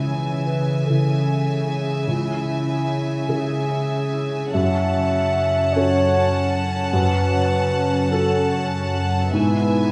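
Bittersweet and sorrowful, this cinematic excerpt drifts in a rubato 6/8 at 50 BPM over C#m and F#m7. A close, lightly vibrato sul tasto violin section carries the melody above a pure, floating second violin line and a dark, soft-attacked classical clarinet, while a background viola section, a felt-muted upright piano with audible action noise, ringing fingerpicked concert harp arpeggios and an intimate, warm cello section bass sit together in a wet scoring-stage reverb.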